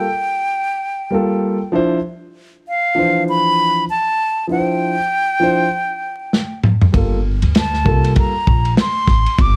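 A swung 4/4 jazz-hop groove with a nocturnal, cool mood opens on a breathy concert flute singing a tongued, expressive melody with vibrato through plate reverb over a dark, mellow grand piano with audible action noise, until a crunchy breakbeat kit with a punchy kick and dark cymbals enters with a fill at 6.3 s, a woody pizzicato upright bass joins at 6.9 s, and the piano drops out at 8.3 s, all beneath a layer of vinyl crackle in this short cut from a longer piece.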